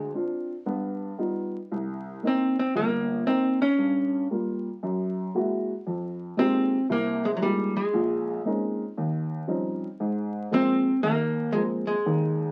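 Heard through the crackle of a very old 78 rpm record and a moderate studio reverb, this relaxed jazz fragment swings at 116 BPM in 4/4 and Ab major, cut from a longer piece. An up-front, clean, picked hollow-body electric archtop guitar, dark and miked through its amplifier, carries the melody between Gb3 and Db4. A mellow, woody, boxy upright piano, slightly detuned, accompanies through chords such as Gm7b5, Gb9 and Bbm11 before settling on Ab69 at 10.0 seconds.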